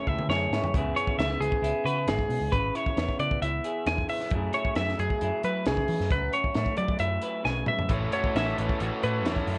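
A straight 4/4 pulse at 134 BPM drives this bright, intricate slice of math rock and midwest emo, with a crisp fusion kit of punchy kick, high-tuned snare, hi-hat and toms in a small pumping room, fills at the very start and again around 7.5 seconds, beneath a round, dark, foam-muted picked bass. A twangy, slightly broken-up lo-fi guitar through a small old amp carries the accompaniment while a clean, compressed twelve-string sits up front spinning arpeggios over Amaj7, C#m7 and F#m11, until a raw, overdriven, double-tracked garage guitar riff comes in at 7.9 seconds as the harmony lands on A69. The whole excerpt is soaked in the worn, warbling pitch drift of old cassette tape, dulled at the top end and set in moderate studio reverb.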